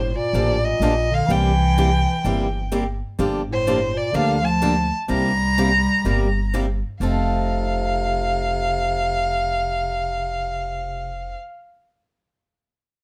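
Playful and swinging, this short excerpt of acoustic string swing in the jazz manouche style moves at 126 BPM in 4/4 with a swung feel on the eighth notes, set in F mixolydian. A rich, expressive bowed violin carries the melody up front, its vibrato and portamento glowing in a plate reverb. Beneath it, a clear bass clarinet sings a second line with soft attacks, scooped notes and vibrato, sounding distant and roomy. The pizzicato upright bass is woody and thumpy, sitting up front, while a bright, boxy picked acoustic guitar joins at 0.3 seconds with swing-style accompaniment. The harmony shifts between Gm9 and C7 before landing on F7 at 7.0 seconds, all wrapped in a light reverb.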